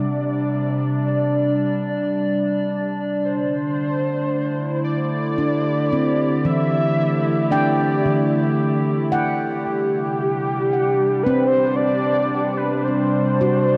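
Ambient piece in a slow, straight 3/4, serene and weightless, cut from a longer work and bathed in a huge, wet reverb. A velvety synth lead with vibrato, chorus and delay fades in over the full 13.8 seconds to carry the melody, while a warbly, nostalgic tape-like pad holds dark, lo-fi sustained chords up front. A ringing handpan played with the fingertips adds meditative arpeggios through delay, as the harmony moves from Csus2 to D7sus4 at 3.2 seconds and returns to Csus2 at 9.7 seconds.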